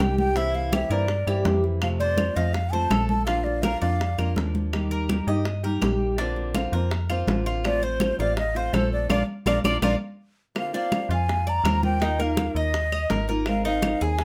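This relaxed Cuban son and guajira groove opens with everything but the flute's later phrases already in motion: a breathy, hollow flute melody with vibrato over fingerpicked nylon-string guitar, bright picked tres arpeggios with doubled strings, and an up-front FM bass with a metallic, fast-attack, decaying edge. At 165 BPM in a straight 4/4, the percussion bed combines damped, hard-handed congas, tight high-tuned bongos and woody claves sitting in the background. The drums are heard in a small room and the claves in a live room, with light reverb across the mix. The flute states its line until 4.3 seconds, pauses, then returns at 7.7 seconds as the harmony moves from C7 and F toward Bb and Eb shadings. Around 9.1 seconds the band hits an accent and a drum fill leads into a new section at 10.6 seconds, where the chords drift through Bbadd9, Ebsus2 and Abadd9 for a gently open, sunny colour. 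The full-bodied guitar and glinting tres keep the texture lively, and the clip is cut from a longer piece.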